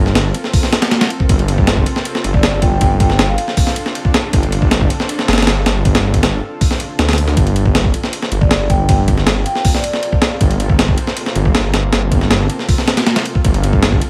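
A straight breakbeat in four anchors this atmospheric, nostalgic drum and bass cut, its sampler-style kit of kick, snare, hi-hat and ride sounding compressed and gritty, with a thumpy kick and a high-tuned snare sitting up front. Beneath it, a detuned saw bass holds low sustained notes with a fast attack, thick and menacing, its beating, tube-saturated tone pressing forward in the mix. In the background, a granular cloud pad drifts through minor eleventh and seventh chords, slow to bloom and long to fade, its blurred, evolving texture roughened by vintage 12-bit sampler grit and bathed in its own reverb. A soft-mallet vibraphone surfaces briefly at 2.3 seconds and again at 8.4 seconds with a short, mellow high melody, metallic and ringing with a slow motor vibrato, set in a boxy small room and trailed by dub echo. A loud bed of vinyl crackle runs throughout, lending the jungle-flavoured piece a dusty, nostalgic surface.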